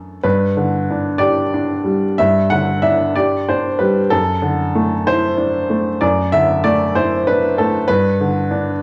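A clear, woody upright piano opens alone at 0.0 s and carries this short neoclassical minimalist piece through to 8.8 s. The mood is intimate and hopeful, moving in a 6/8 metre at about 63 beats per minute counted in dotted quarters, with a loose, rubato feel in G major. The harmony settles on G, shifts to Dadd9/F# at 4.1 s, and then returns to G at 7.9 s, with the playing spanning F#2 to F#5. The piano sits up front with a natural tone, short sustain and audible action noise that add a close, personal quality. A moderate studio reverb and a cassette tape character give the recording its room and texture. The recording is cut from a longer piece.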